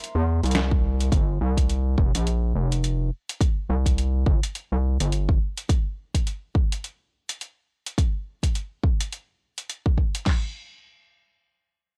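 Glitch hop at 105 BPM in G dorian with a 16th-note swing, playful and swaggering, heard through a dry, gritty cassette-tape ambience in an excerpt cut from a longer piece. A very quiet, mellow analog pad holds a C7 chord for the first 1.1 seconds before the harmony moves to Gm7, while an up-front, tube-saturated synth bass, aggressive and resonant with oscillator sync, growls low until 5.4 seconds. Two drum kits run together: a compressed, pitched-down sampler-style kit with hi-hat and a medium-tuned snare opens the excerpt, and a layered electronic pop kit with a punchy kick, fat snare and crash cymbal joins at 0.7 seconds and sits up front.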